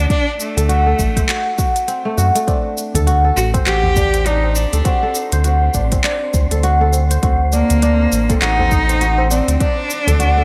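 A swung 16th-note groove at 101 BPM in 4/4 sets a mystical, meditative organic downtempo mood, built on a deep, layered electronic kick and a crisp, tape-warm kit of hi-hat, cabasa and handclaps re-recorded in a large room, with a very quiet, low-tuned tabla entering at 2.5 seconds. Up front, a clear bowed cello sings a smooth, even melody with vibrato and delay over a D7/A chord, while a mellow, fingerpicked kora rings out delayed arpeggios above a round, dark analog bass that pumps with sidechain. From 3.6 seconds an airy, breathy wind-like texture drifts in the background, and moderate plate reverb gives this bright 1980s-style digital production its sheen.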